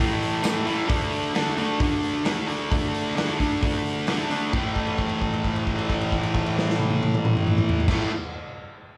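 Recorded with light reverb in a small room, this short cut from a longer garage rock piece sounds raw and swaggering, driven by a bright, double-tracked fuzz guitar riff up front, moving from A5 to D5 and back. A gritty, saturated acoustic drum kit with a punchy kick, medium-tuned snare, hi-hat, toms and crash pushes a straight 4/4 at 132 BPM, while a jingly tambourine sits in the background for a moment at 0.4 seconds. At 4.5 seconds the second section arrives with a held note that rings until 7.9 seconds.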